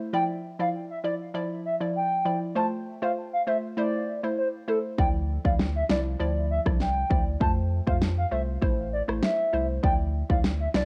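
A soft, woody, mellow clarinet-like synth lead with vibrato carries the melody over a bouncy, detuned square-wave pluck that carries a cassette-tape tint, in this hypnotic, sultry dancehall excerpt at 99 BPM in D minor, cycling through Dmadd9, F and Am. At 5.0 seconds a deep, round sub bass and a punchy, up-front electronic pop kit of kick, rim click and fat snare enter together. The whole take has light reverb and the character of a home cassette recording.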